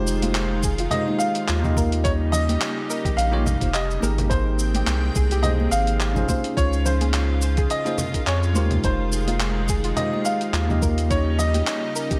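A clear grand piano carries the melody from the start, with delay, over a bell-like tine electric piano wrapped in tape echo, a lush, chorused unison pad and a deep, round analog bass sitting up front with tube saturation, in a wistful sunset chillout groove with a gentle swing. A dusty, gritty sampler-style kit of handclaps, hi-hat, shaker and congas slips in almost at once, joined by a soft chorused pluck playing background arpeggios, ringing acoustic congas and a thumpy, tape-toned electronic kick at 0.6 seconds. The Fm7, Eb7, Abmaj7 and Dbmaj7 changes drift through light digital ambience until the bass drops out at 11.6 seconds, near the close of this fragment from a longer piece.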